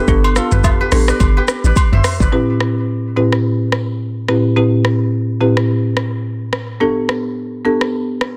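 Smooth and sultry, this excerpt from a longer afrobeats piece moves at 107 BPM in 4/4 with a swung sixteenth-note feel, sitting in A minor and tuned to A4 = 444 Hz. A woody, rustic folk marimba played with medium mallets on hardwood bars carries the accompaniment up front, dry and warm, while a warm, fingerpicked kora adds a crisp, ringing riff with delay before dropping out at 3.4 s. A deep, round log drum bass with a dark FM tone, noise layer and fast-attack, decaying body sits prominently beneath, dropping out at 2.3 s as the music shifts into its second section. The electronic, produced afro-pop drum kit stays up front throughout with a deep kick, smooth hats, rim click, shaker and toms, its snare given a touch of soft clipping, while agogo bells and woodblock briefly add a small-room acoustic layer with an egg-shaker and group-handclap character. Harmony rests on Am7 before moving to Gadd9 at 6.8 s, all set in light reverb and small room ambience under a dense, heavily limited modern master.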